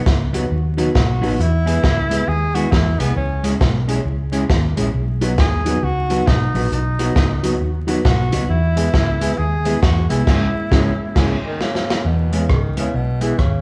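A breathy, whispered tenor saxophone carries the melody with vibrato and scooped notes in this bouncy, joyful swung ska clip cut from a longer piece, backed by a twangy, slightly broken-up electric guitar and a woody, slightly detuned upright piano playing stabs in the background. Up front sit a round, dark hollow-body bass and a gritty, saturated breakbeat kit with dark cymbals and a tight kick. The band plays live in one room with large studio reverb and vinyl crackle, hitting a band accent from 10.3 seconds and a drum fill at 11.6 seconds before a new section arrives at 12.0 seconds.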